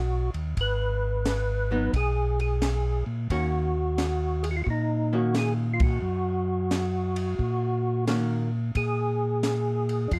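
A swung 4/4 groove at 88 BPM carries this short, smoky soul jazz organ trio excerpt in Eb minor, moving from Abm to Ebm7 and touching Bb7 near the close, with the band hitting an accent together at 5.7 seconds. A fat, percussive tonewheel organ with key click and chorus vibrato takes the melody through a slow rotary speaker, while a round, mellow organ bass sits beneath it and a compact cocktail kit with dark cymbals, a high-tuned snare and a punchy kick enters at 0.3 seconds. A hollow-body archtop guitar adds clean, picked accompaniment from 1.7 to 8.5 seconds, all in a dry, dark production with little reverb.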